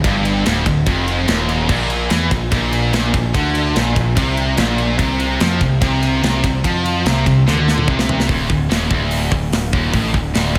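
A big arena sound with a lush hall reverb frames this heavy, epic metal excerpt, cut from a longer piece, where the up-front, acoustic drum kit with its tight kick and medium-tuned snare drives alongside a punchy, fuzz-soaked picked bass. Three bright, distorted guitars sit further back playing riffs over Dm, Bbadd9 and Csus24: one heavy, one scooped, and a double-tracked part with slapback echo that drops out at 8.3 seconds. A drum fill leads into a closing D5 section, where the remaining guitars, bass and drums carry on to the end.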